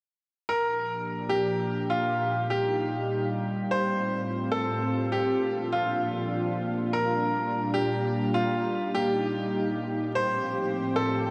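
Soaked in a huge ambient reverb with a dreamy, washed-out sound, this heavy, chaotic dubstep fragment in G minor at 149 BPM in half-time opens with a brilliant grand piano melody, up front and touched with tape echo, from 0.5 seconds, joined at 0.8 seconds by a thick, detuned sawtooth unison pad with chorus holding sustained chords through Gm7, Eb, Fadd9/A and Bb.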